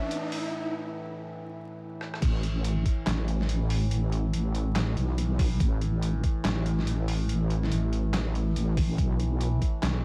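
Dry and dusted with vinyl crackle, this dark, heavy deep dubstep excerpt in half-time opens with an up-front riser and a faint, breathy flute-like synth lead over a bright drone of moving overtones, with gritty, pitched-down sampler-style drums and a tape-warm snare running throughout, before the drop at 2.2 s brings in an overdriven, knocking kick and a saturated, detuned sawtooth wobble bass pushed up front.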